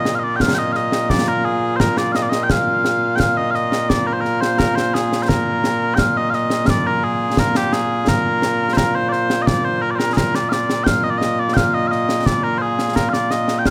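A moderate recital-hall reverb surrounds this short excerpt of ceremonial, proud Scottish pipe music, set in Bb mixolydian at 86 BPM in a straight 2/4. Mellow small bagpipes carry the solo melody up front, sweet and continuous with vibrato, ranging from Bb2 to G5 across two statements of the same section that begin at 0.0 and 6.7 seconds. Concert snare drum and concert bass drum enter at 0.1 seconds, close, dry and acoustic with dark cymbals, also placed up front.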